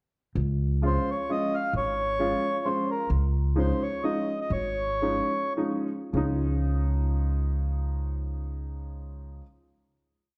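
A mellow, reedy accordion with a dry tuning carries a period-phrased motif melody from 0.9 to 5.5 seconds in this short, charming and nostalgic musette waltz in Db major, swinging with rubato at 104-133 BPM and slowing from 3.1 seconds into a final Dbadd9 chord, over a clear, worn, slightly detuned upright piano playing close-voiced backbeat chords and a thumpy gut-string pizzicato upright bass on root and fifth, all set in a moderate recital hall reverb with a dark production.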